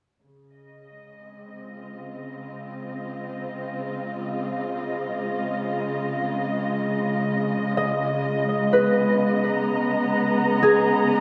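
A muted string section fades in from 0.2 seconds with veiled, con sordino chords on Dbmaj7, bowed with vibrato and a soft attack, lush yet distant in this peaceful ambient passage at 63 BPM in 4/4. At 7.8 seconds a mellow concert harp enters with ringing fingerpicked arpeggios through an analog delay as the harmony moves to Abmadd9/Db. A wet spring reverb gives the serene fragment, cut from a longer piece, an echo-heavy sound.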